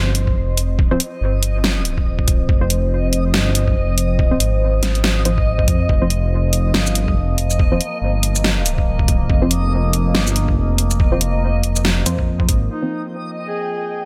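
A dark, detuned saw bass rumbles up front through this brooding, meditative deep dubstep cut in F minor at 141 BPM with a swung half-time feel, joined by a gritty, thumpy pitched-down kick and a layered electronic kit of hi-hat, shaker and huge snare, while muted filtered chord stabs with chorus and dub echo, a resonant drone of moving overtones and a reversed, dreamy granular texture fill the space until the bass stops at 12.7 seconds and a mellow, folk-style duduk with vibrato enters over the lingering drone and texture.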